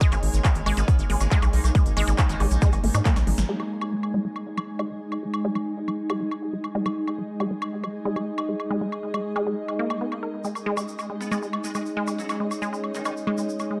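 Psychedelic trance with a driving, alien mood, opening on a drop where a punchy, overdriven electronic kick and a round, deep analog bass sit up front beneath an overdriven big-room dance kit of handclaps, crisp hi-hat, snare and woodblock, with a grainy egg shaker adding sparkle. A lush, detuned sawtooth unison pluck riff with digital delay pumps over a resonant, chorused drone of sustained chords carrying 12-bit sampler grit and a cloudy, blurred granular pad, while a metallic, distorted FM wobble bass surfaces in the background. The kick stops at 3.1 seconds as a drum fill begins, the bass stops at 3.4 seconds on a band accent, and from 3.5 seconds a filter sweeps across the drone in a dark production with light reverb.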